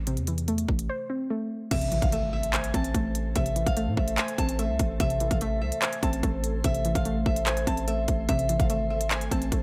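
Melancholic and dark, this half-time trap and hip hop excerpt moves at 146 BPM in A harmonic minor, opening on an A minor chord. It opens with a brief break in which a soft, round pluck with chorus and a punchy, heavy 808-style bass carry the harmony, joined almost at once by an electronic trap kit of hard-clipped kick, crisp hi-hats, handclaps and crash cymbal placed up front in the mix. At 1.7 seconds a very quiet electronic impact marks the turn into the main section, where a fingerpicked acoustic flamenco guitar takes the melody high in its range, its warm tone trailed by tape echo. From 2.1 seconds a glassy, ethereal FM pad with ensemble chorus and its own reverb holds mellow sustained chords in the background. A light reverb gives the whole a modest sense of space, and the passage is cut from a longer piece.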